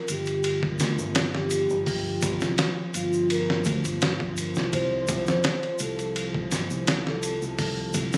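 A breathy, pure sine lead with phaser, chorus and dub echo sings over a dark, warbling lo-fi pad from the first moment of this melancholic, cinematic trip hop fragment at 84 BPM, soon joined by a warm fingered electric bass, a gritty, pitched-down sampler-style drum kit with a thumpy kick sitting up front, and a faint, band-limited egg shaker, all moving from G5 to C5 at 4.7 seconds and heard through the club reverb of a phone recording in the room.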